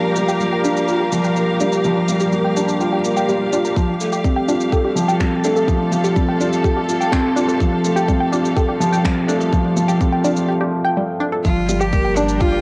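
The felt-muted upright piano stands out most, playing a soft, dark riff up front with its thick felt and audible action noise, trailed by tape echo. This cinematic, intimate piano-and-strings electronica moves at 125 BPM in a straight 4/4, with a rich studio string section holding smooth, bowed chords that pump against the sidechain, while a lush, detuned unison pluck spins arpeggios in the background under a filter sweep through the build-up. Electronic shaker and finger snaps tick along from the start, and a tight, produced kick drum joins at 3.8 seconds as the harmony moves from Gm7 to F. After a brief break, the drop at 11.4 seconds brings in a biting, nasal cello melody with an airy bow and a round, deep sub bass on G1, returning to Gm7. Moderate spring reverb and small-room ambience frame a homespun cassette sound, and the passage is cut from a longer piece.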